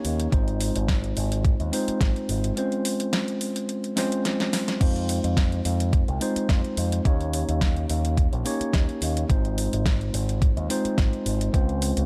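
A mellow tine electric piano, a bright picked electric bass with an envelope filter, and a pop drum kit open this groovy, sleek nu-disco excerpt together, with a thumpy, sampler-style electronic kick joining at 0.3 seconds. The electric piano carries the accompaniment, sounding clean and up front as if through its own built-in speakers, with sidechain pumping and a slapback echo. Beneath it the bass sits forward in the mix, its picked notes direct and amped and shaped by the envelope filter. The drum kit brings a fat, layered snare, metallic hi-hats and crash cymbal, overdriven and set in a small room. The overdriven kick is the loudest part, set in a large room. A drum fill at 4.0 seconds breaks up the lightly swung sixteenth-note feel, while a digital ambience surrounds the whole excerpt as the chords move from Ab6 through Dbmaj7, Fm7 and Eb7.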